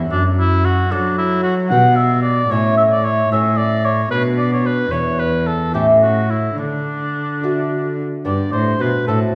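A wet recital hall reverb, with a decay of about 1.4 seconds, places the listener further back in the room, though the oboe and cello still sit up front. This is a flowing, radiant baroque-style sonata movement with continuo, cut from a longer piece, in D major at 74 BPM in a straight 6/8, tuned to A4 = 437 Hz. The oboe carries the solo melody from 0.1 seconds, its tone soft in attack with light vibrato and a smooth top, in a classical style. Beneath it a single bowed cello plays the bass line in a dark, reedy gut-string voice, while the lute accompanies with delicate fingerpicked gut double strings, some octave-doubled, giving a bright acoustic shimmer. The harmony moves from D/F# through G/B, A and Bm to an E5, then returns through A and D before arriving on G at 8.2 seconds as the opening material begins again.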